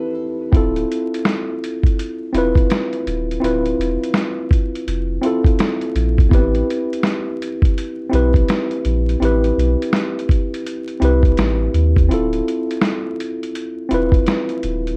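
A swung, unhurried lo-fi hip hop groove in four settles in at 0.5 s, when the sampler-style drum kit arrives up front with a thumpy kick, a medium-tuned snare, hi-hat and finger snaps, all sounding compressed, pitched down and muffled, as if re-recorded in a large room. Before that, a fingerpicked nylon-string guitar with fresh strings sits faintly in the background for the opening half-second, its classical tone trailing tape echo and plate reverb. A worn, slightly out-of-tune tine electric piano carries the chords throughout, mellow and clean with its own plate reverb, moving between Am9 and rootless Dm9 voicings. Beneath it, a deep, round dub sub bass of sustained triangle and square-wave tones with a fast attack holds the low end up front. The reflective, melancholic mood is deepened by a dark, warm production with vinyl crackle and a moderate studio reverb, and a brief break at 12.1 s interrupts this excerpt from a longer piece.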